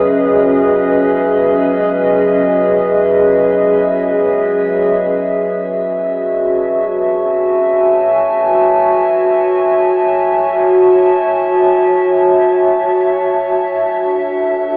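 Ambient excerpt in free time, serene and spacious, where a warbling, nostalgic tape-like pad with detuned square and triangle tones and a sub octave sustains mellow, up-front chords through chorus and shimmer reverb, joined until 5.5 seconds by a resonant, overtone-sweeping sawtooth and sine drone, all bathed in a huge wet reverb and a worn cassette, AM-radio sound with warbly pitch drift as the harmony moves from C#m7 to F#m7 and settles on D7(no3) at 13.8 seconds.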